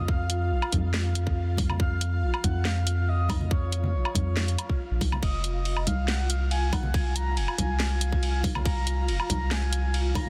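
Cavernous and brooding, this deep dubstep cut moves at 140 BPM in a half-time 4/4 feel, rooted in F phrygian and shifting from a rootless Bb minor to F minor at 5.2 seconds. A soft, round sub bass sits up front, its deep sustained tone anchoring the low end beneath a tight electronic kick that enters at 0.1 seconds. A garage drum kit joins at 0.3 seconds with a cracking snare, warm hats, ride cymbal and woodblock, both kits carrying the close character of a small room. Bright, thin-skinned congas played with soft hands sit in the background from 0.7 seconds, their compressed, saturated sound trailed by dub echo. Above, a granular cloud pad holds blurred, detuned, mellow chords with a slow attack and long release, while a breathy, flute-like synth lead traces the melody with subtle chorus and dub echo. The digital ambience and dense, heavily limited master give this short fragment of a longer piece a full, modern weight.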